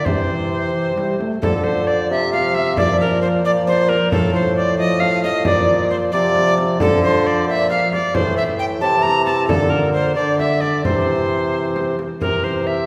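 A bright alto recorder carries the melody up front in this courtly, festive renaissance-style consort dance, its airy, woody tone shaped by a soft attack, a touch of chiff and vibrato. The music moves in a straight 6/8 at 89 BPM, counted in dotted quarters, in C mixolydian, with harmonies moving from C through Dm, F/A and Am before settling back on C. Beneath the melody, a close-miked trombone supplies warm accompaniment in classical style, while a more distant, roomy bassoon with light vibrato holds the bass line. A frame drum struck with hard hands adds acoustic percussion from 0.1 s to 12.4 s, with the sound of a small room. The ensemble sits in the wet reverb of a church or concert hall, and the clip is cut from a longer piece, ending at about 12.9 s.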